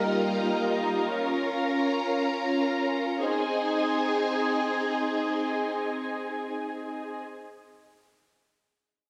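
Upbeat yet wistful, this short pop fragment drifts in free time in A-flat major, tuned slightly below standard pitch. A single ensemble organ-string part carries the whole passage from 0.0 to 7.2 seconds, holding sustained chords between G3 and B-flat 4. Its tone is vintage and organ-like, with a soft attack and a warbling ensemble chorus that keeps the held notes shimmering up front. The harmony moves from Ebadd9 to Bbm, then settles on Ab at 3.2 seconds as the music passes into its second section. A lush hall reverb with digital ambience soaks the mix, giving the clip a dreamy, floating quality, as if lifted from a longer piece.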